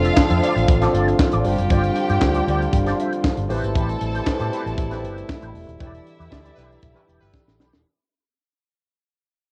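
This glamorous, danceable disco excerpt comes from a home cassette recording, carrying light reverb and a small room ambience. A tight funk drum kit sits up front with a high-tuned snare, tight kick, hi-hat and handclaps, while a dark, foam-muted fingered electric bass gives a round, punchy bottom. A worn, slightly out-of-tune tine electric piano, lightly overdriven with medium tremolo through a combo amp, shares accompaniment duties with a bright, twangy electric guitar run through an envelope filter and wah. A rich, focused violin section with vibrato plays a distant second line, and a French horn section holds sustained chords with light vibrato. The whole passage fades out as the chords move from F6 through G7sus4 and Am9 to Em7, with a band accent from 5.8 seconds, faint, loose horn stabs entering at 6.6 seconds and a drum fill at 7.3 seconds.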